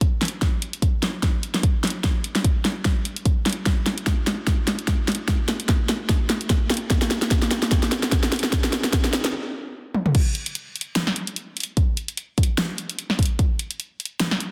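This short cut from a longer future bass piece opens with an electronic kick drum and a pop drum kit together, both layered, produced and placed up front, with a small-room character. The groove sits in a half-time feel with a light swing on the sixteenths, and the mood is bittersweet and lush. Through the build-up, drum fills run through the kit, which brings crash cymbal, hi-hat, snare and toms, until everything halts in a stop at 9.3 seconds, broken only by a brief fill at 9.9 seconds. The drop lands at 10.1 seconds, where the punchy kick and fat snare return; the kick drops out at 13.5 seconds while the kit carries on to the end. A light reverb surrounds the parts, and the master is dense and heavily limited in a modern style.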